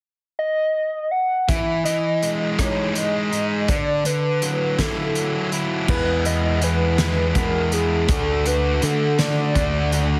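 Heavily compressed into a radio-like squeeze with light reverb, this wistful, jangly indie rock excerpt unfolds at 54 BPM in 6/8. A hollow, woody square-wave lead with chorus, vibrato and analog delay carries the melody from 0.4 seconds. At 1.5 seconds an up-front, bright fuzz guitar riff and a loose acoustic kit with dark cymbals, a fat snare and a punchy kick in a pumping room join over Emaj7 and Dadd9, and at 5.9 seconds an overdriven, picked electric bass enters as the chords move to E and D.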